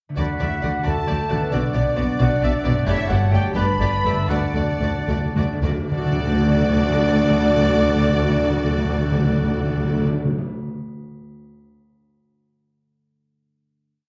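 The French horn section carries a soaring, heroic line in this short cinematic adventure cue in D major, played in 6/8 at 71-90 BPM while the bowed strings give it a lush, vibrato-rich body: violins hold the tune on repeated notes with a second violin section doubling it at the octave, violas repeat notes in the background, and cellos and double basses anchor a sustained bass. A mellow, airy flute doubles the tune at the octave, clarinet and oboe weave independent inner lines, and a very quiet harp rings out rolled chords from start to finish. The music slows from 2.2 seconds as timpani with hard mallets enter at 4.3 seconds for a fill, settling into a final chord at 5.9 seconds, all set back in a reverberant recital hall.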